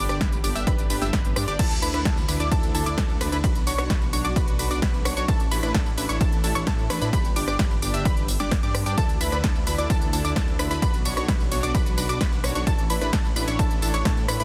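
Uplifting and euphoric, this festival progressive house drop, cut from a longer piece, drives at 130 BPM in D major through G, Dsus2, Bm and Asus4 under a dense, heavily limited modern master bathed in digital ambience. A bright, detuned supersaw stab riff with cassette-tape coloring and delay sits over a thick, chorused saw bass with tube saturation, while a lush, wave-folded unison pluck plays high arpeggios through delay, and all three pump with sidechain. A big-room kit of snare, crisp hats, rim click, tambourine, ride and crash enters at 0.1 seconds, overdriven and re-recorded in a large room, and a punchy, similarly driven electronic kick follows up front from 0.2 seconds.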